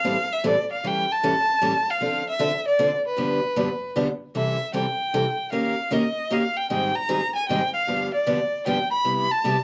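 A playful 3/4 jazz waltz swinging at 153 BPM in C major, this short excerpt pairs a rich, smooth bowed violin melody with vibrato and plate reverb against a bright, boxy picked parlour steel-string acoustic guitar accompaniment, both up front throughout, in a wet club reverb on worn, warbling cassette tape, moving from a turnaround of Am7, Dm7 and G7 into a second section with colourful shifts through Eb7 and Abmaj9 before settling on Cmaj7 at 9.1 seconds.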